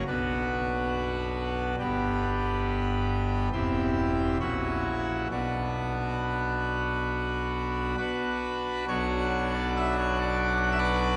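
A pipe organ on full registration opens this short excerpt alone and up front, its mixtures and baroque voicing giving a majestic, brilliant sound with audible chiff, spanning E1 to F#5. The classical, chorale-style music is reverent and serene, moving at a slow 68 BPM in 4/4 with rubato in B minor, through Bm, G, C/E and F#7/A# before returning to Bm at 5.3 seconds. The opening section restarts at 8.9 seconds, and a wet cathedral reverb with a 4.4-second decay surrounds the organ.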